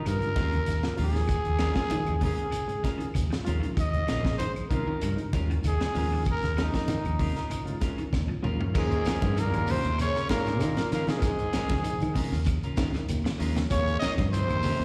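Heard as a live gig through the venue's PA with a light recital-hall reverb, this driving, funky afrobeat excerpt rides on a saturated, gritty breakbeat kit and a round, up-front fingered bass, with very quiet congas, grainy shekere and faint woody claves filling out the percussion. A raspy, growling trumpet carries the melody with slapback echo over two clean picked electric guitars, one playing chorused arpeggios and the other stabs, while a reedy, worn electric piano with fast tremolo sits in the background until 8.7 seconds. Near the end of a drum fill, a very quiet trombone section enters on a second line at 8.7 seconds, joined by a distant, clear tenor saxophone at 8.8 seconds.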